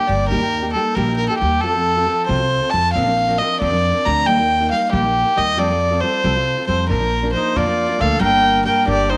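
Soaked in a wet spring reverb with small room ambience, this festive, romantic mariachi passage in a straight 6/8 is cut from a longer piece. A single bowed violin sits close and up front with a nasal, reedy gut-string tone and airy bow in period style, carrying the melody over full-bodied fingerpicked nylon-string guitar with a deep classical voice and a woody pizzicato upright bass on steel strings. At 7.4 s a warm, classical-style solo trumpet adds a second line as the chords move from Bb toward Gm.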